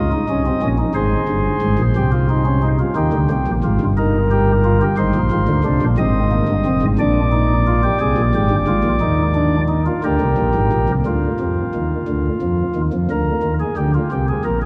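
A pipe organ on soft flute stops carries this solemn, serious baroque-style three-part fugue, heard up front with a warm chiff and a span reaching from F1 to Eb5. The music moves at 59 BPM in a straight 12/8, tuned to A4 = 441 Hz, and its harmony passes from Eb7 through Fm7/Ab and Bb7 back to Eb before turning to Dm and Gm/D at 11.1 seconds. A dark production and a cathedral reverb with a 5.4-second decay surround the organ through this short passage cut from a longer piece.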